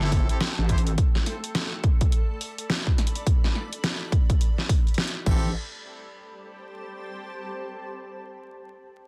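Swaggering and playful, this glitch hop excerpt opens with brilliant jazz-style horn stabs carrying 12-bit sampler grit, sidechain pumping and tape echo over a heavy, saturated wobble bass with chorus and a punchy, up-front kick and deep-snared dubstep kit re-recorded in a large room, all drifting atop a cloudy, evolving granular pad that plays on alone until 7.8 seconds under vinyl crackle and a dense, heavily limited master.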